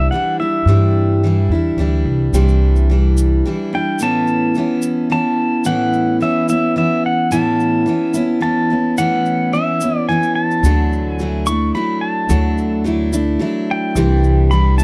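A dry, close recording in a 1970s studio style carries this nostalgic, gentle acoustic folk fragment in A major at 108 BPM in 3/4, where a full-bodied, up-front jumbo steel-string guitar picks the accompaniment under a clean, compressed pedal steel melody played with fingerpicks, slide and volume swells, a woody, growly pizzicato upright bass drops out at 3.4 seconds and returns at 10.6 seconds as the chords move from Cadd9 through Aadd9 to Dadd9, and a grainy, bright tube shaker joins at 2.3 seconds.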